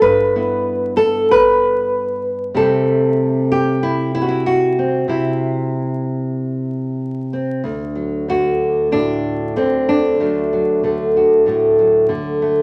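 Soaked in studio reverb with a vinyl crackle, this peaceful folk excerpt features a solo nylon-string guitar, fingerpicked up front with the warmth of fresh strings and a deep classical tone, moving from G6 to C6 before settling on D at 7.7 seconds.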